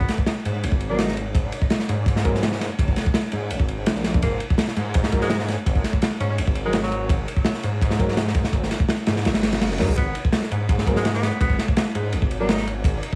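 A small room sound with vinyl crackle frames this raw, brooding drum and bass excerpt with a jungle edge, moving at 167 BPM in G# minor. Up front, a gritty, saturated breakbeat kit of tight kick, snare and dark ride cymbal runs throughout alongside a thick, menacing detuned saw bass, while a vintage jazz-style tenor saxophone with vibrato plays short solo phrases through dub echo. A boxy grand piano adds echoed background stabs from 0.9 s, and very quiet electronic downlifter and reverse cymbal effects surface at the start and again at 9.4 s, where a reverse cymbal leads into a G# minor chord at 10.0 s.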